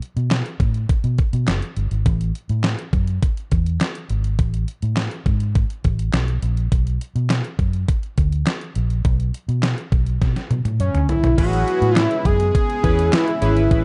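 Early-eighties boogie funk with a slick, late-night mood, opening on a detuned 8-bit drum machine with a thumpy kick, handclaps and hi-hat, joined at 0.2 seconds by a dark, round, foam-muted electric bass sitting up front. During a drum fill, a fat sawtooth analog lead with vibrato and slapback echo enters at 10.8 seconds, and at 11.4 seconds a glossy chorused polysynth and a very quiet, lush string machine bring in sustained Amaj9 harmony. The production is dark and warm, set in a digital ambience, and this is a short cut from a longer piece.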